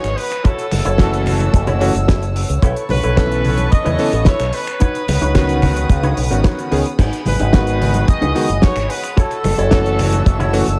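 Sensual and groovy, this nu-disco excerpt rides a tight, up-front kick and a fat-snared, damped 70s kit with finger snaps, hi-hat and crash, while background congas and a bright, envelope-filtered fingered bass push the pulse forward. A punchy trumpet section with vibrato carries the melody through tape echo, over a twangy, chorused electric guitar riff with its own envelope filter, a clangy electric grand piano entering at 1.0 s, and dark, sul tasto chamber strings pumping beneath. Chords move from F#m7 through B9sus4, C#9sus4 and G#m7 back to F#m7 in an echo-heavy mix with small room ambience.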